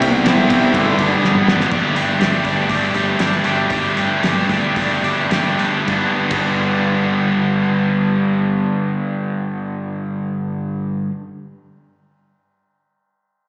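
A dark, clean lap steel opens this driving, sunny classic rock fragment with a brief compressed slide melody, shaped by volume swells and a slapback echo, before falling away at 1.4 seconds. Under it, a bright, double-tracked electric guitar plays a distorted, picked riff up front with its own slapback echo, moving through C and G chords. A growling, overdriven fingered bass sits low beneath the guitar, while a cloth-damped, thuddy drum kit brings a fat snare, tight kick and dark cymbals, with a fill leading into the next passage at 1.7 seconds. From there the band settles on Gsus2 and gradually slows down, returning to G at 5.9 seconds; the drums drop out at 6.5 seconds, leaving guitar and bass to carry on. The whole performance sounds like a live gig heard through a venue's PA, with recital hall reverb and a small speaker coloring the mix.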